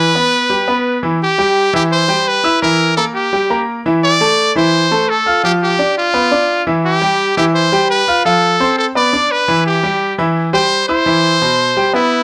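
Sunny and danceable, this Latin excerpt puts a brilliant, punchy trumpet up front on a forceful pop-style solo melody, colored with vibrato and scooped notes, from 0.0 to 12.2 seconds. A bright, polished grand piano with short sustain accompanies it throughout, moving through a progression from Cmaj7 through Fmaj7, G7 and Em before returning to Cmaj7. Moderate studio reverb and a dark production round off the sound.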